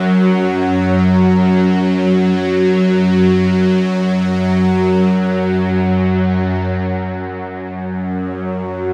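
Drenched in a huge reverb with an 8.5-second tail, this fragment sounds as if it fills a vast, echoing cavern. It is a cavernous, unsettling ambient piece in free time, tuned to A4 = 441 Hz, carried entirely by a solo bowed-like drone spanning F#2 to F#3. The drone is string-like, tense and bright, with a detuned sawtooth edge, a noise layer, vibrato, phaser and tape echo; it sits up front with a slow attack and long release, and the music moves into a new section at 6.7 seconds before the excerpt cuts off at 8.9 seconds.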